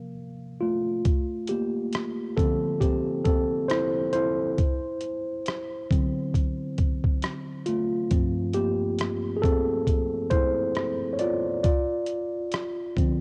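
A worn, slightly out-of-tune tine electric piano opens this reflective, melancholic lo-fi hip hop excerpt alone on a C7sus4, its mellow tone dulled by cassette tape and a low-pass filter. At 1.1 seconds a pitched-down, gritty boom bap sampler-style kit enters with a thumpy kick, rim click and hi-hat, compressed and carrying vintage 12-bit sampler character, while the piano moves through Dm9, D9, G9sus4 and Dm7 at a slow 68 BPM with a swung 16th-note feel in D minor. Both parts sit up front under light reverb in a home cassette recording that runs to 13.2 seconds.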